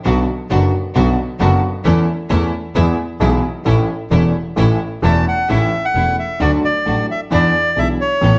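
A reedy, bright bandoneon enters up front at 5.0 seconds with the melody, its line trailed by a slapback echo, in this passionate, nostalgic tango fragment in A major at 132 BPM, played with a rubato feel. Beneath it, an up-front concert grand piano with deep bass carries the accompaniment, a single bowed double bass adds a focused, boxy low end with vibrato, and a clear, smooth symphonic string section punctuates the harmony with even, lightly vibrated bowed stabs. The ensemble sits in a moderate large studio reverb, and the chords move from Bm through A and E before turning to D and E7 near the close.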